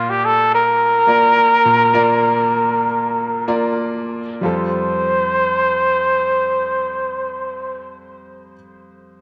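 A breathy, whispered trumpet with vibrato and a soft attack carries the melody up front in this uplifting, anthemic pop fragment in F major at 91-106 BPM, slowing over the first 4.4 seconds as the harmony moves from Bb to Fadd9, while a woody, vintage upright piano accompanies and rings on alone after the trumpet stops at 7.8 seconds, all set in a wet spring reverb and small room ambience.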